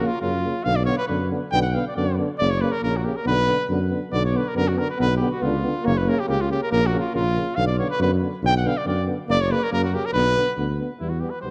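Balkan folk brass band excerpt at 139 BPM in 2/4, virtuosic and fiery in B Hungarian minor, with a clear, soft-attacked cornet carrying the classical-style melody up front over a close-miked tuba bass with light vibrato entering at 0.2 seconds, while a mellow trombone with vibrato and a warm euphonium accompany in the background, all set in a dark production with moderate scoring-stage reverb.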